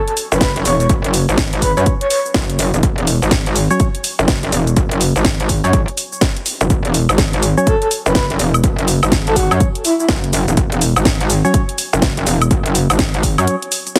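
A breathy, flute-like synth lead opens this gritty, swaggering bass house excerpt over an F#5 chord, its soft melody carrying vibrato, chorus and tape echo. It sits over a tape-toned house kit of hi-hat, shaker, woodblock and a cracking, up-front snare, with a punchy electronic kick that sounds re-recorded in a small room. In F# minor at 124 BPM with a 62% swing on the sixteenths, the groove is driven by a metallic, aggressive wobble bass, saturated through tubes and pumping with sidechain compression, the loudest part in the mix. From 1.8 seconds a hollow, dark organ stab adds percussive, decaying hits with chorus, tape echo and sidechain pumping. The lead drops out and returns at 7.7 seconds, and a short break arrives at 13.5 seconds. The whole track has light reverb and a heavily compressed, radio-like sound.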